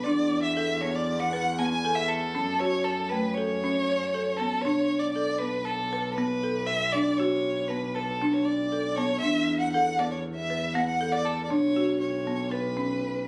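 A bowed violin and a bowed double bass sound together at the very start, joined a moment later by a folk marimba, in this hypnotic, restless piece of contemporary chamber music in B minor, set in an uneven 9/8 metre with a straight feel at 236 BPM counted in eighths. The violin carries the melody up front with a smooth top, expressive vibrato and portamento, its tone warm. Beneath it, the double bass is rich and earthy, sitting distant in the mix with a light vibrato. The marimba, struck with medium hard mallets on hardwood bars, spins out woody, dry, rustic arpeggios in the middle register. The harmony moves from E7sus4 through F#m and Bm7, returning to E7sus4 before settling on Bsus2, and the passage is cut from a longer piece, running to 13.3 seconds. A moderate studio reverb and compression shape the sound, which was recorded on a phone in the room.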